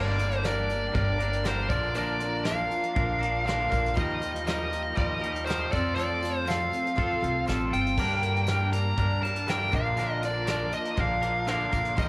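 A dark, overdriven lead guitar sings the melody up front through cassette tape and analog delay, over a shimmering, octave-doubled twelve-string acoustic in the background, a clean, twangy electric riff, woody pizzicato upright bass and a very quiet, lush bowed string section holding sustained chords. A jingly tambourine joins at 0.1 seconds and a soft brush drum kit with dark cymbals and a punchy kick at 0.2 seconds, settling into a straight 4/4 folk rock and heartland rock groove over a Gm, Bb, Ebadd9 and F progression. The dusty, wistful home cassette recording sits in a small room with light reverb, and this brief passage is cut from a longer piece.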